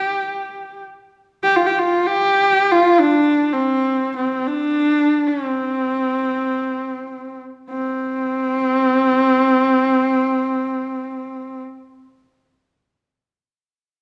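This is a Mongolian folk recording in the traditional style, with a proud, vast mood. It unfolds in free time, easing into a slower pace from 2.4 s to 7.7 s before moving into a new section. A single horsehead fiddle carries the whole excerpt as a bowed solo, staying between C4 and G4. Its horsehair strings give it a husky, focused character, and the tone is rich, shaped by vibrato and sliding portamento. The fiddle sits up front in a wet recital hall reverb with a 1.4-second decay, and the recording is cut from a longer piece.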